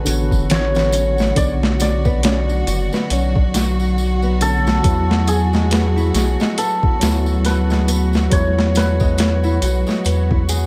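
Brooding and smoky, this swung trip hop excerpt sets a hammered, shimmering cimbalom melody with 12-bit sampler grit and tape echo over a worn, slightly out-of-tune tine electric piano with overdrive and harmonic tremolo, soft sul tasto studio strings with vibrato, a dark fingerpicked nylon-string guitar in the background, a deep, round dub sub bass with tube saturation, a gritty, pitched-down boom bap drum kit with a thumpy kick and high-tuned snare up front, and a faint tambourine, as the harmony shifts from Bmadd9 to Eadd9 at 4.8 seconds in a dry mix.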